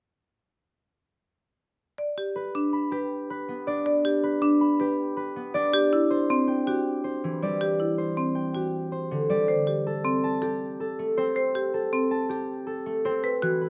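A meditative, hypnotic stretch of minimalist classical pattern music, cut from a longer piece, moves at 160 BPM in a straight 5/4, tuned slightly high to A4 = 441 Hz, over G, Cadd9 and Gsus2 harmony. Woody rosewood marimba arpeggios struck with medium hard mallets enter at 2.0 seconds, close-miked, dry and full, and a bright, thumb-plucked concert harp melody follows at 2.4 seconds, ringing up front. A second, fingerpicked harp adds a ringing, warm accompaniment in a lower register from 3.5 seconds, all captured by close, detailed microphones in light reverb.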